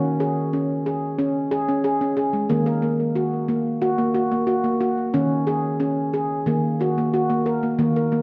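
Bathed in a wet, echo-chamber reverb, this short cut from a longer meditative world piece features a solo handpan, up front with a ringing, vintage, band-limited nitrided-steel tone under the fingertips and treated with delay, drifting hypnotically between two chords from start to finish at 8.2 seconds.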